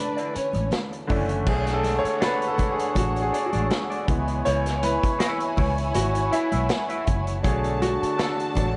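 Silky and bittersweet, this is a short cut of lush 1970s-style soul at 80 BPM in B dorian, with a gentle 16th-note swing. A breathy tenor saxophone with vibrato and scooped jazz phrasing opens the melody, but it plays only until 1.1 s. From 1.5 s, a bright grand piano takes a solo, brilliant and intimate up front, with audible action noise and long sustain, over chords that move from Bm9 to C#m7 and back. Beneath it, a dark studio string section bows a soft-attacked sul tasto second line with light vibrato and a smooth top. A picked electric guitar through a small old amp adds a lo-fi, slightly broken-up wah riff in the background. The groove comes from a vintage drum kit with a punchy kick, dark cymbals and a pumping room sound, thick-skinned high-tuned congas set back in the mix, and a round, foam-muted fingered electric bass, all in light reverb and small room ambience.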